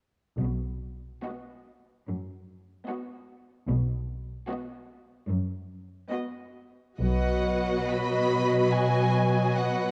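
A slow, romantic classical movement for symphony orchestra in B major, tender and serene, moving at a rubato 65-76 BPM in 4/4 and cut from a longer piece. A bowed cello section and double bass section open at 0.4 s on a B chord, the cellos rich and close, the basses smooth and even, both up front with vibrato. From about 1.2 s a focused chamber violin section carries the melody high above, while a lush second violin section with a smooth top sings a second line and a rich, up-front viola section fills in the accompaniment. The double basses drop out at 7.9 s, just after the music moves into a new section at 7.0 s, and the upper strings and cellos carry on to the end. A moderate scoring-stage reverb gives the ensemble a sense of space, and the sound has the worn, warbling pitch drift of old cassette tape.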